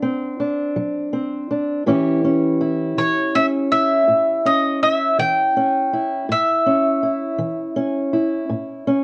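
A slow 12/8 pulse at 54 BPM, counted in dotted quarters and played straight, drives this short cut from a longer piece of acoustic country blues in A mixolydian, tuned slightly below standard pitch. The mood is swaggering and soulful, carried by a picked mandolin melody whose doubled strings ring out up front with a woody, warm tone in the upper register. Beneath it, a fingerpicked old ladder-braced acoustic guitar supplies the accompaniment, its dark, boxy voice and aged strings also sitting up front alongside the mandolin. Both parts play throughout the 9 seconds, moving from D7 to A7 at 1.9 seconds. Light reverb surrounds the pair, and the sound carries the warbling pitch drift of worn cassette tape, giving it a weathered, homespun character.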